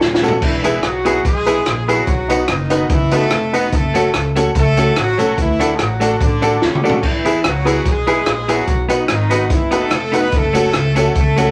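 Ska at 145 BPM in 4/4 with a light swing on the eighths, this excerpt from a longer piece feels driving and mischievous. A clear horn section carries the melody in octave doubling with pop-style vibrato, while a clean, picked electric guitar with a compressed tone plays accompaniment over chords moving through E, B, F#m and D. A woody, growly pizzicato upright bass holds the low end, and a compact cocktail drum kit sits up front with a punchy kick and a high-tuned snare, opening with a short fill and adding another at 6.6 seconds. From 0.2 seconds a detuned, jangly honky-tonk upright piano adds stabs, and a jingly tambourine tucked in the background carries a dub echo. The whole mix sits in a wet small room, with vinyl crackle running underneath.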